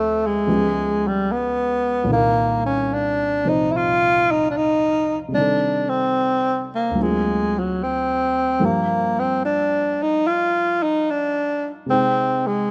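Lightly reverberant and intimate, this swung, romantic jazz fragment cut from a longer piece features a breathy, up-front tenor saxophone singing the melody with light vibrato and scooped notes over a dark baby grand piano whose short-sustained chords, moving from Db7#11 through Am7b5 and D7alt to Abmaj7/C, carry audible action noise.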